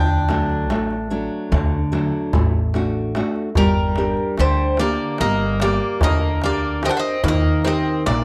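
In a straight 9/8 at 147 BPM counted in eighths, this dark, wistful Greek folk fragment in G harmonic minor sets a metallic, double-strung bouzouki melody over a second bouzouki line, an up-front fingerpicked nylon-string guitar, a thumpy gut-string upright bass and a deep clay darbuka with hard hands that enters at 0.3 seconds, moving from D to Gm at 3.6 seconds and Eb at 7.2 seconds in a dry, close 1970s-style studio sound.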